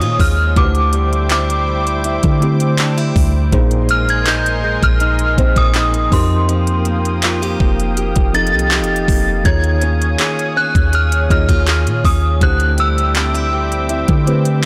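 A chiming, inharmonic FM synth chime carries the melody through ensemble chorus and digital delay in this sensual, late-night contemporary R&B cut at 81 BPM, over a mellow tine electric piano, a thick, detuned sawtooth unison pad, a boxy parlour acoustic guitar fingerpicking arpeggios, a deep, round 808-style bass and an up-front trap kit of knocking kick, crisp hi-hats and handclaps, all set in a digital ambience with a blown-out, overdriven sound as suspended ninth chords shift beneath.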